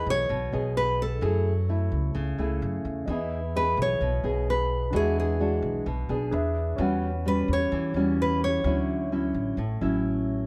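This relaxed, sunny bossa nova fragment opens on two classical nylon-string guitars, both up front. One fingerpicks a warm-toned melody in a high, narrow range, while the other, darker and thumb-plucked on fresh strings, supplies the chords. An upright bass joins at 0.1 seconds, its steel-string pizzicato woody and close. At 3.1 seconds a warm grand piano enters in the background with accompaniment, as the harmony moves in a straight 4/4 at 129 BPM in E major, from Emaj7 and F#m9 through E9 and E7 to Em69 and Dmaj9. The guitar melody stops at 9.3 seconds, and the accompaniment carries on beneath a light reverb.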